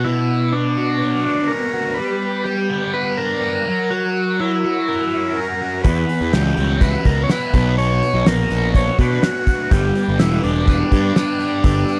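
Psychedelic rock with a hypnotic, trippy mood, cut from a longer piece, in which a buzzy combo organ carries the melody through slapback echo over a bright, double-tracked fuzz guitar riff with phaser and sustained tonewheel organ chords with key click and slow rotary swirl sitting in the background, until a warm, overdriven picked bass and a cloth-damped, thuddy drum kit with a fat snare and tight kick join at 5.8 seconds, all captured in a dry, close 1970s-style studio sound.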